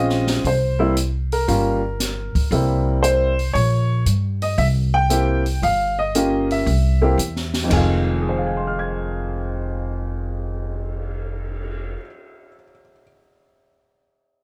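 Swinging in 4/4, this smoky, cool jazz piano trio fragment puts a clear, long-sustaining upright piano melody and a growly pizzicato upright bass up front, while an acoustic drum kit with dark cymbals, a high-tuned snare and a boomy kick sits lower in a natural studio room touched by light reverb, before the piano rings on alone from 11.9 seconds to 13.0 seconds.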